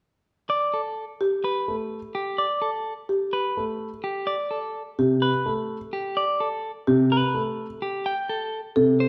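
This is classical minimalist pattern music, a hypnotic and bright fragment cut from a longer piece in straight 4/4. A clean, picked electric guitar carries the melody from 0.5 seconds, its compressed tone sitting up front. At 1.2 seconds a marimba played with medium mallets joins with arpeggios, its padauk bars sounding woody and boxy, as if in a small room. A concert grand piano enters at 1.7 seconds with accompaniment that is warm and intimate, with deep bass, audible action noise and a polished, present sound. The harmony rests on a C5 chord before moving to Gsus2 near the end, and a wet recital hall reverb fills out the sound.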